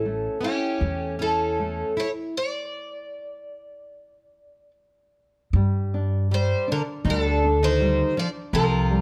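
An up-front, dark, shimmering twelve-string acoustic guitar with old strings carries the melody in this longing, passionate fado-style ballad, moving at a rubato 72-82 BPM in 4/4 and tuned to A4 = 437 Hz. Alongside it from the start play a boxy plugged-in parlour twelve-string with a second line and audible finger squeak, a thumb-plucked classical nylon-string guitar in accompaniment, and a thumpy, woody pizzicato upright bass on steel strings. The music breaks off in a stop from 2.4 to 5.5 s before settling into G minor, all captured by close, detailed microphones in light reverb.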